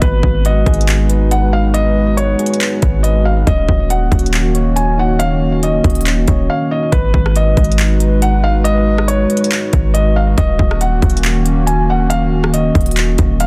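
A felt-muted upright piano carries a soft, intimate melody through low-pass filtering and delay over a moody, detuned analog pad pumping with sidechain, a boomy 808-style bass, a trap kit with hard-clipped kick and crisp hats, and round electric-piano-like synth arpeggios that drop away at 6.9 seconds, giving this ethereal, melancholic half-time cloud-rap excerpt at 139 BPM in G# dorian its dense, dry, heavily limited sheen as G#m7 and D#m7 alternate.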